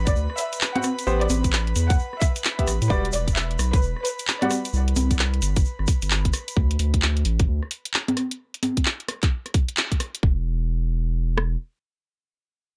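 This soulful, late-night UK garage cut rides a swung two-step groove at 131 BPM, built on an up-front electronic drum kit with a tight kick and rim clicks running to 11.5 seconds, layered with congas, handclaps, warm hats and more rim click that drop out at 10.2 seconds. A deep, thick, saturated sub bass pumps against the sidechain beneath it all, while a grainy, band-limited tube shaker sits in the background until 6.6 seconds. An airy, breathy pad holds soft, bright chords through a chorus effect, pumping in time, as a lush bowed violin section with smooth vibrato carries a short delayed melody in its first few seconds. After an opening D chord, a clear grand piano adds open, long-sustaining stabs with delay over Asus2 and Emadd9, before the harmony thins to bare fifths. The mix is dry, and a full-band accent lands at 9.8 seconds just before the music shifts into a new section.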